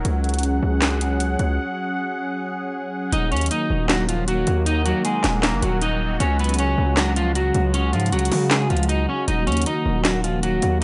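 A detuned, warbling sawtooth pad with lush chorus opens this dark, eerie trap excerpt at 156 BPM in a half-time feel, alongside a saturated, aggressive 808-style bass and an up-front electronic kit of sharp snare, handclaps and metallic hi-hats. After a break from 1.6 to 3.1 seconds, a twangy electric guitar on the edge of break-up enters with the melody, its fingered lines trailed by analog delay. Underneath, the harmony alternates between Dbsus4 and Eb minor in light digital reverb.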